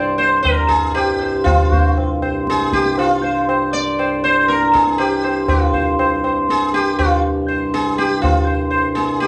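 A straight, even pulse in four underpins this meditative, serene Hindustani classical fragment, cut from a longer piece and lasting just over nine seconds. The sitar carries the melody in the upper register, sitting up front with a bright, buzzing, plectrum-plucked tone that shimmers through its sympathetic strings. Beneath it, a hand-pumped harmonium holds a low drone, its reedy, nasal voice heard close-miked and dry, full-bodied with a breathing quality. The tabla enters at 0.2 seconds, low-tuned and ringing, captured close. The ensemble plays live in one large studio room, and a generous reverb lends the performance a sense of calm space.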